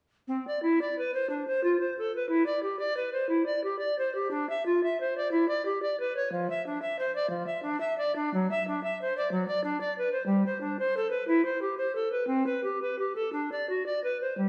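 Flowing and radiant, this brief excerpt of a baroque-style classical fantasia in 6/8 at 60 BPM (dotted quarters) unfolds with free rubato as a solo bass recorder plays from 0.3 to 14.5 seconds across a range of F3 to E5, its airy, woody tone marked by breathy chiff, tongued notes and expressive vibrato, sitting up front yet bathed in a recital hall reverb with a 1.6-second decay.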